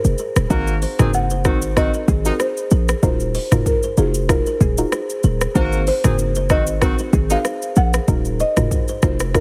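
Afrobeats with a sunny, romantic glow, cut from a longer piece, where a buzzing, woody marimba played with soft mallets carries the melody through delay over a punchy, heavy 808-style bass and an up-front electronic afro-pop kit of deep kick, metallic hats, rim click, shaker and toms, while a ringing kalimba riff, a soft, dark chorused pluck and a distant, roomy horn section from 0.5 to 7.4 seconds fill out a heavily compressed, radio-like sound.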